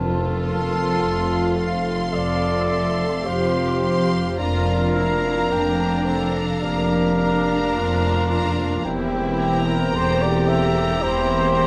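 Serene and lyrical, this slow romantic movement for symphony orchestra flows with a gently elastic rubato feel and is cut from a longer piece. From 0.5 s a lush violin section with rich vibrato carries the high melody, while a very quiet second violin line moves beneath it as the harmony shifts from F to Bb over F and then to C7 over E. A dark, smooth-topped trumpet section stands out with prominent stabs, and a French horn section holds very quiet sustained chords. In the background, a clear, punchy clarinet and a mellow cor anglais trace inner lines, supported by a very quiet bassoon and a focused studio viola section. Even cellos and distant double basses anchor the bass, timpani struck with hard mallets sound only until 1.5 s, and a moderate scoring-stage reverb surrounds the orchestra.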